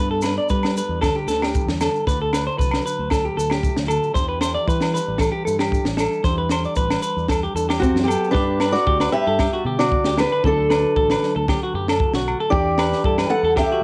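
Joyful and sunny, this excerpt from a highlife guitar band tune moves at 115 BPM in G major, with a bright, twangy clean electric guitar playing arpeggios through plate reverb and tape echo over a dark, lush-chorused electric guitar accompaniment, a round, punchy fingered bass, a dry cocktail kit with a high-tuned snare, ringing agogo bells and grainy maracas that drop out at 8.3 s, while a fingerpicked steel-string acoustic guitar enters up front at 7.8 s to carry the melody, all captured as a cassette home recording in a moderate room.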